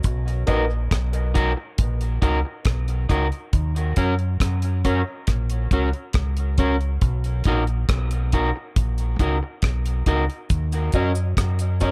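A light small-room reverb surrounds this hypnotic dub reggae excerpt at a slow 69 BPM, which moves between Bmaj7 and a rootless Ebm7. Up front, a round, dark fingered electric bass and a dry drum kit with tight kick, hi-hat and rim click hold a deep groove, while a twangy, slightly broken-up electric guitar with dub echo enters at 0.5 seconds. A woody, boxy upright piano adds brief echoed stabs, and a compressed, saturated cabasa sits in the background, returning at 10.5 seconds.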